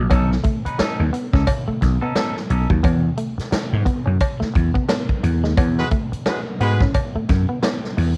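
A bright, picked electric guitar riff and a growly, amped vintage slap bass open this short, strutting funk fragment, with the bass sitting up front over a swung sixteenth-note feel. A swinging big-band kit of hi-hat, snare and kick joins at once, its medium-tuned snare and hard-hitting kick carrying a natural hall sound, while a metallic, close and dry cowbell adds its own color. A second clean, twangy guitar, fingered and compressed, plays accompaniment in a higher register until 2.7 seconds. The harmony moves from B9 to E, and the band hits an accent near the close, where a clear horn section with light vibrato and a smooth top plays a brief second line from 5.8 to 6.8 seconds. The guitars, drums and horns carry a cassette-tape color within a home recording that has light reverb.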